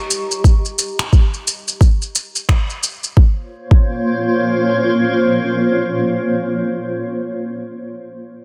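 Organic downtempo at 88 BPM in 4/4, with a swung sixteenth-note feel and a hypnotic, warm mood, this short excerpt sits in Bb dorian. A granular cloud pad holds sustained chords across the whole 6.7 seconds, its blurred, detuned unison tone evolving slowly with a moving notch, slow attack and long release, sidechain pumping and its own built-in reverb. An electronic shaker and finger snaps sit up front from 0.1 until 3.1 seconds, the snare carrying a touch of soft clipping. A soft electronic kick drum, re-recorded in a small room, is the loudest part, entering at 0.4 seconds and dropping out at 3.9 seconds. The harmony is open at first and settles onto Bbm at 3.2 seconds, with the mellow pad floating under a lush hall reverb. The master is dense and heavily limited in a modern style.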